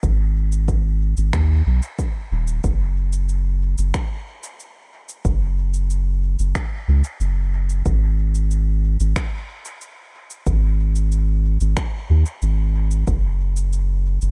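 A round, soft dub sub bass sits up front, ranging from D#1 to D#2 under a deep, tape-warm electronic kick drum in a small room, while overdriven electronic cabasa and finger snaps carry dub echo in this spacious ambient dub cut from a longer piece at 92 BPM, which shifts into a new section at 2.6 seconds before the kick drops out at 13.2 seconds.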